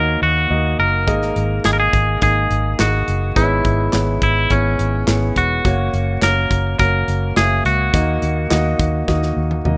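A rough home-demo mix in a small room carries this dramatic, driving piano-led pop passage, cut from a longer piece. A clean, compressed, twangy electric guitar sits up front with the melody over an intimate concert grand whose audible action noise, deep bass and long sustain fill out the accompaniment, while a dark, foam-muted, round and punchy fingered electric bass anchors the low end. At 1.1 seconds an acoustic drum kit with a tight kick, medium-tuned snare, hi-hat, toms and handclaps joins in, closing with a fill from 9.1 seconds over chords moving from D#m through G#sus2, C#m7/G# and F# back to D#m.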